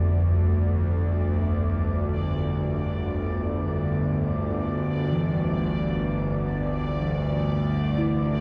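Ominous and unsettling, this 8.4-second dark ambient drone fragment in free time pairs close-miked, metallic bronze gamelan-type bossed gongs playing arpeggios through tape echo with a tense, bright, detuned sawtooth bowed-like drone held low and up front with vibrato, while a faint bubbling texture of random resonant filter steps sits on a high D5 under chorus and shimmer reverb, the harmony moving from G5 to Em7/G at 2.7 seconds inside a vast, echoing cathedral space.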